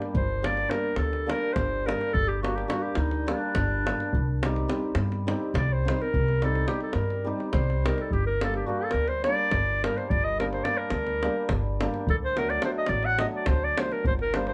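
Balkan folk in the manner of a wedding band, this restless, virtuosic passage cut from a longer piece moves in a straight 7/8, with a warm, soft-attacked clarinet carrying a solo throughout, up front yet roomy with plate reverb. Beneath it, a shimmering, ringing hammered dulcimer supplies mellow accompaniment, a woody, dark pizzicato upright bass sits close and prominent, and a tight, vintage-toned davul keeps the percussion. The harmony moves from Gm to Cm, back to Gm, and lands on D at 12.1 seconds, all captured with close, detailed microphones and light reverb.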